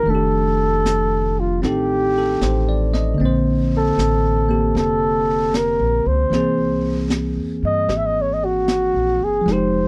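A smoky, intimate jazz ballad in C minor moves at an unhurried 77 BPM in 4/4, with a gentle swing on the eighth notes. A breathy, mellow flugelhorn sits up front and carries the melody from the first moment, shaping its lines with light vibrato and scooped notes. Beneath it, a bell-like tine electric piano lays down bright, clean chords through F13, Bbmaj9 and C7b13, while a pizzicato upright bass on gut strings gives a woody, thumpy low end. A brush drum kit comes in at 0.1 seconds, its high-tuned snare and hi-hat sounding dark and smooth with a rolled-off top. The dry, close recording has a 1970s studio character with only light reverb, and this short passage is cut from a longer piece.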